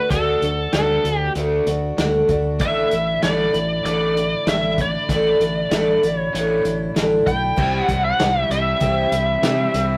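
Nostalgic folk rock and heartland rock at 96 BPM in 4/4, where a biting, overdriven lead guitar carries the melody up front over a shimmering, octave-doubled twelve-string acoustic, a crunchy double-tracked electric riff in the background, a round, punchy fingered bass and a muffled, lo-fi vintage drum kit, all in a rough rehearsal-room sound with moderate reverb, moving from D to Asus4 before shifting to C at 7.6 seconds in this short cut from a longer piece.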